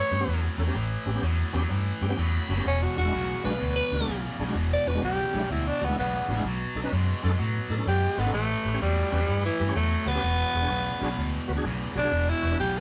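A swung 4/4 groove drives this rollicking yet laid-back blues cut from a longer piece, as a growling, raspy tenor saxophone takes an up-front jazz-style solo from the first second over a bright, picked overdriven guitar riff and a round, foam-muted vintage electric bass that sits dark and forward. A full tonewheel organ, lightly overdriven through a slow rotary speaker with chorus vibrato, fills in the accompaniment and steps out briefly with a fill from 1.7 to 2.7 seconds as the harmony moves through ninth chords. The band sounds like it is playing live together in one stone room with a moderate reverb.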